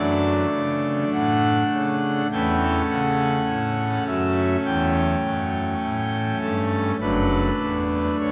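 A full pipe organ opens on a D/F# chord, its mixtures giving the sound a brilliant, majestic edge. This is a reverent, serene classical fragment in a chorale style, cut from a longer piece and lasting about 8.3 seconds. The organ plays alone throughout, sitting up front, with a romantic voicing that spans from the deep pedal register up to the upper treble. The harmony moves to A7/E at 2.3 seconds and settles back on D/F# at 7.0 seconds. The slow, rubato pulse in common time lets each chord hang in a cathedral reverb that rings on for several seconds.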